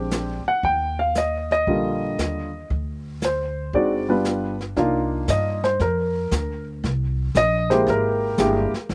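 Playful and sophisticated, this short jazz piano trio passage, cut from a longer piece, swings at 116 BPM in 4/4, moving from Eb major into C minor at 4.8 s. A baby grand piano carries the melody up front, its tone touched with a slapback echo, while a woody pizzicato upright bass with steel strings sits close and full underneath. A brush drum kit, dark and smooth with a boomy kick, medium-tuned snare and rolled-off top, plays a little further back, entering at 0.1 s. The harmony passes from Bb13 through Ebmaj7, Csus2/D and G7 before settling on Cm11 and then C7b13. Recorded outdoors with little reverb, the trio sounds dry and intimate, the piano clearly leading the blend.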